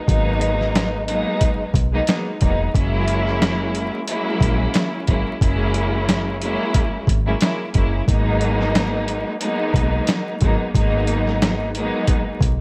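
Boom-bap hip-hop with a dark, gritty mood and a swung feel, this excerpt from a longer piece sets a lush, bowed string section up front, its vibrato coloured by cassette tape, over chords that move from G#m9 to F#9 and back at 8.1 seconds. Beneath it, a round, foam-muted fingered electric bass holds the low end, while a compressed, pitched-down sampler drum kit with a thumpy kick, medium-tuned snare and hi-hat carries a 12-bit crunch. A haze of vinyl crackle sits over the whole recording.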